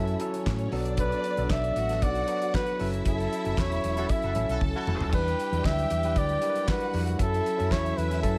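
A light studio reverb frames this driving, sultry disco excerpt at 116 BPM, where a breathy, up-front flugelhorn with scooped notes carries the melody over a lush bowed violin section, a gritty overdriven tine electric piano, a round hollow-body electric bass and a damped 70s drum kit with a fat snare and tight kick, while a distant horn section adds brief stabs from 4.0 to 5.1 seconds during a band accent capped by a drum fill.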